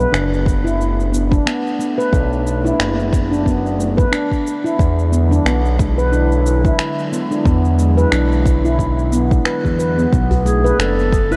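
Organic downtempo at 90 BPM in B dorian with a 16th-note swing and a warm, meditative mood, built over a Bm7 to E9 movement: a ringing, mellow handpan plays arpeggios with tape echo up front, over a smooth, saturated synth bass and an airy, breathy pad with chorus and sidechain pumping sitting in the background. Electronic shaker and finger snaps run throughout, a deep electronic kick joins at 0.5 seconds, and a tight, cracking djembe with metal rattles arrives at 10.3 seconds, just before a distant, roomy clarinet enters as a solo melody at 10.5 seconds. The mix carries light small-room reverb and the worn, warbling pitch drift of old cassette tape, and this cut from a longer piece ends at 11.4 seconds.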